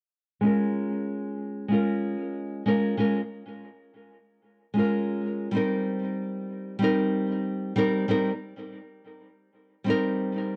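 A lightly swung sixteenth-note feel in 4/4 at 94 BPM carries this relaxed, warm chillout fragment in Bb dorian, cut from a longer piece, where a small, up-front fingerpicked nylon-string guitar with audible finger squeaks plays accompaniment from 0.4 to 10.6 seconds, moving from Bbm7 to Cm7 at 5.5 seconds through a low-pass filter sweep, cassette tape colouring and tape echo, all set in a modest small-room reverb with the homespun grain of a cassette recording.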